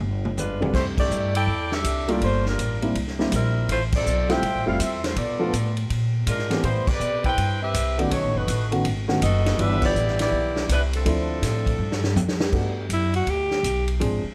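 Energetic and brassy, this big band swing piece, cut from a longer performance, moves with a lively swung bounce. A distant, roomy drum kit opens with a short fill and carries the groove on ride, hi-hat, snare, toms and crash, its boomy kick and rolled-off top sitting back in the mix, while a woody pizzicato upright bass with steel strings anchors the low end underneath. Up front, a mellow saxophone section carries the melody with light vibrato and a smooth top, punctuated by repeated band accents. A dark baby grand piano comps with short sustain and an intimate feel, its action noise audible. After a second drum fill, the band shifts into a new section at 12.5 s, where a clear alto saxophone steps forward for a brief solo with scooped notes. Light reverb and a faint mains hum colour the sound.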